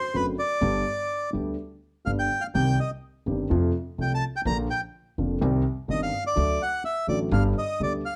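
A reedy, bright bandoneon carries the melody up front, its close-miked, dry tone sitting high and full over a melancholic, passionate tango in C minor at 125 BPM, played rubato in 4/4. A concert grand piano with deep bass and short sustain accompanies it, while a woody, thumpy pizzicato upright bass with steel strings anchors the low end. The short excerpt opens on D7/F# resolving to G, then moves through C minor, F and B-flat before returning through C minor and D to G, all within a dark production with light reverb.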